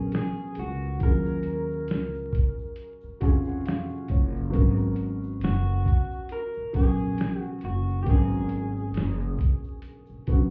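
Heard muffled as if through a wall, with club reverb and vinyl crackle, this nostalgic, reflective lo-fi hip hop excerpt sits at 68 BPM in G# dorian with a swung 16th-note feel. A slightly broken-up electric guitar through a small old amp carries the melody with analog delay, over a dark, felt-muted upright piano whose action noise is audible and which plays a fill from 2.8 to 4.5 seconds, moving between G#m11 and D#m11 chords. Underneath, a woody pizzicato upright bass sits up front, and at 0.1 seconds a pitched-down, thumpy sampler-style drum kit with finger snaps, hi-hat and snare comes in up front alongside a grainy, very quiet egg shaker.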